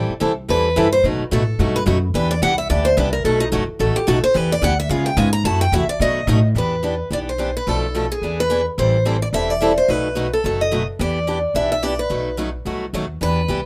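Acoustic string swing in the jazz manouche style at a brisk 217 BPM in E minor, this bittersweet, swinging passage cut from a longer piece sets a bright, boxy parlour-style picked steel-string guitar soloing over its melody from 0.5 seconds against a second picked steel-string guitar picking out minor-key changes like Am9, B7 and Em7, all anchored by a woody, thumpy pizzicato upright bass on gut strings, with the up-front players framed in a moderate club reverb.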